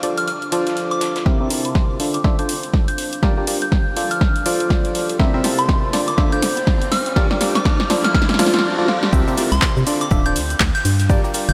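A dreamy, reverb-soaked mix carries this energetic, soulful piano house passage at 122 BPM in G dorian, swung on the sixteenths, where a biting, barking FM electric piano riff rides sidechain pumping, chorus, diffuse delay and a filter sweep, while a soft, pure synth bell melody rings above it through its own phaser and filter sweep. A punchy, overdriven analog drum machine of handclaps, shaker, hi-hat and snare drives the groove, joined at 1.3 s by an up-front electronic kick for a build-up with drum fills, as a very quiet riser, a faint huge arena kit and a deep, moody sawtooth pad sit far back. At 9.1 s the drop lands with a hollow, organ-like FM bass, dark and tube-saturated, over chords cycling through F6, C7, Dm7 and Gm7.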